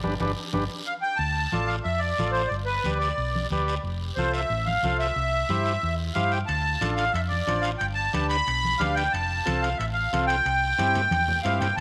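A straight 4/4 cumbia groove at 182 BPM drives this passionate, danceable Latin excerpt in D dorian, cut from a longer piece and opening on a band accent with a drum fill before settling into its main section at 1.2 seconds. Up front, a dark, round hollow-body short-scale electric bass, fingered and amped, anchors the low end, while a buzzy vintage combo organ with light vibrato supplies clean chordal accompaniment through a progression moving from Dm and G to F and C, with a Gadd9 along the way. The accordion carries the melody from 0.9 seconds, reedy and sweet with a light tremolo tuning and a slapback echo, sitting mid-forward in the mix. Percussion fills out the groove: low-tuned congas with a thin-skinned brightness played with soft hands in the background, a raspy guiro heard close, and very quiet, compressed, saturated metal-shell timbales that ring briefly at the start and return at 6.5 seconds, with a closing drum fill near the end. 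A moderate echo chamber reverb lends the whole performance a spacious, vintage air.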